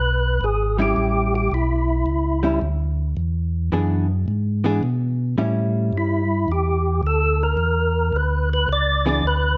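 Lightly reverberant and close-up, this short soulful, bluesy soul jazz organ trio excerpt swings easily over E, A7 and E7 changes. A fat, lightly overdriven tonewheel organ with percussive third-harmonic attack, key click, chorus vibrato and a slow rotary speaker carries the melody, falling silent at 2.6 seconds and returning at 6.0. Beneath it a round, dark second organ holds the bass throughout, while a clean, compressed hollow-body electric jazz guitar, picked with a warm tone, comps from 0.8 seconds.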